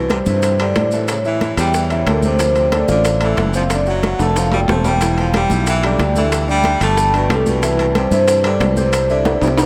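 The vibraphone, played with soft mallets, carries the melody in a mellow, airy voice with a slow motor vibrato, ringing across this sunny, sophisticated Afro-Cuban jazz excerpt at 184 BPM in a straight 4/4 in C major. Beneath it, a growly, punchy fretless electric bass sits up front and sustains its notes, while a bright baritone saxophone with scooped notes and a soft attack adds a second line, its tape echo trailing behind. A concert grand piano in the background supplies warm, intimate accompaniment, its deep bass and audible action noise giving it a natural presence. The percussion enters at 0.1 seconds: tight, high-tuned bongos and thin-skinned congas played with soft hands sit very quiet, close and dry, while ringing metal-shell timbales with a vintage, band-limited tone and grainy, distant maracas fill the background. A drum fill arrives at 4.2 seconds and another closes the section at 9.3 seconds, and the chords move from C through Dm9 and F#dim to Em7 before returning to C, all bathed in a vast cathedral reverb.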